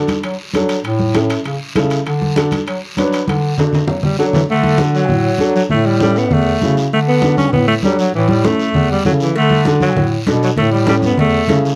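Cumbia with a sunny, festive mood, this short cut from a longer piece moves on a straight four-beat pulse. A mellow, woody upright piano provides accompaniment throughout, while a warm, up-front bass clarinet carries the low line in a classical style. Bright, thin-skinned congas struck with hard hands, a raspy guiro, and ringing metal-shelled timbales with cowbell fill out the percussion, and a drum fill leads into the second half. The timbales and cowbell drop out at 4.4 seconds and return at 9.4 seconds. From 4.0 seconds a breathy, whispered alto saxophone takes the melody, close-miked and soft in attack, in a pop style. Light reverb gives the whole cut a dark, warm sound.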